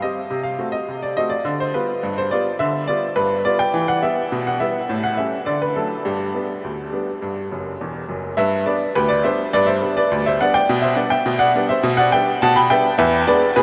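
A bright, woody upright piano, slightly detuned with audible action noise, plays a jaunty, playful ragtime solo in a straight 2/4, moving from Cdim7 through G7, Em, A7 and D to G, adding a fill at 7.5 seconds before the second section opens at 8.4 seconds, its intimate, up-front sound set in a huge, wet, echoing reverb, in this short cut from a longer piece.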